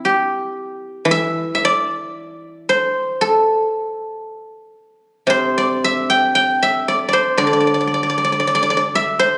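A solo guzheng, played with fingerpicks and sitting up front, spans C3 to G5 with a silvery, ringing tone that stays mellow in this elegant, contemplative piece of Chinese traditional music. The playing moves in a rubato 2/4 around 58 BPM across this 9.4-second excerpt from a longer work. Captured on a phone in a moderate recital hall, the sound carries added club reverb and compression, and its top end stops at 10.9 kHz.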